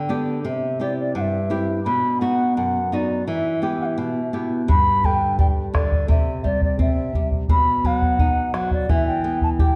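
A dark, warm production set in a reverberant recital hall frames this earthy, melancholic Andean folk passage in 2/4, cut from a longer piece. A large wooden quena carries the melody with an airy, mellow straight tone, soft attack and rolled-off highs, while a fingerpicked flamenco guitar sits up front, accompanying through a C, B and Em progression. At 4.7 s, as the section repeats, a round, compressed and saturated bombo enters close up, giving weight to the rest of the excerpt.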